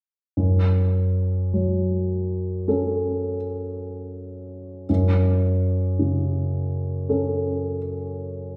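A wet recital-hall reverb surrounds this short classical passage, heard from further back in the room. A dark, mellow grand piano plays an accompaniment from 0.4 to 8.6 seconds, its intimate tone carrying audible action noise. The rubato pacing gives the passage an elegiac, solemn character, as though it has been lifted from a longer piece.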